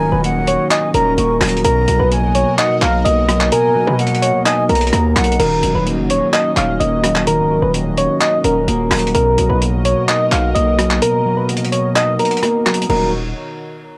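A lo-fi home cassette recording with light reverb carries this hard-hitting, melancholic half-time trap cut, where soft, round electric-piano-like synth keys sing the melody with chorus over a dark, slightly broken-up fingered electric guitar and a bright, resonant pad swelling in the background. A breathy concert flute, close-miked and echoing through plate reverb and tape echo, adds a second line until 5.4 seconds, while a saturated, aggressive 808-style bass sits up front. A gritty, overdriven sampler-style kit drives things with crash, handclaps, hi-hat and rim click, and the kick drops out from 11.0 seconds as the brief passage shifts between Ebm7 and Bmaj7.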